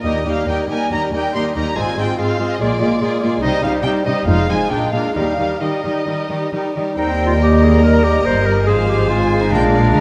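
A quick classical-period movement for symphony orchestra in Eb major, this graceful, spirited passage moves at 130-147 BPM in 4/4 with a rubato feel, cut from a longer piece. A dark-toned violin section carries the melody with soft-attacked, expressive vibrato, joined by a clear solo clarinet and a rich, closely heard second violin section on supporting lines. Beneath them a smooth, even viola section sits in the background alongside a close-miked solo bassoon, while a distant cello section and a lush double bass section anchor the bass. At 7.0 s the texture grows as a distant, roomy oboe and a very quiet, airy flute ensemble add further lines, and a dark French horn section holds soft-attacked sustained chords in the background. Very quiet timpani with hard mallets, close and dry, enter at 9.5 s, all set in a moderate concert hall reverb.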